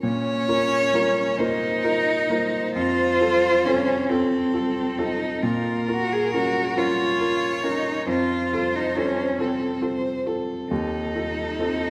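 From the first moment, a rich, expressive violin carries the yearning melody with soft attacks, vibrato and portamento, over a smooth, even cello second line and a warm, natural baby grand piano accompaniment with short sustain, in a melancholic, slow romantic piano trio movement in Bb minor, moving in a rubato 6/8 at 45 BPM in dotted quarters, swinging between Bb minor and F in a wet concert hall reverb with a 2.0 s tail, all in this brief fragment of a longer piece.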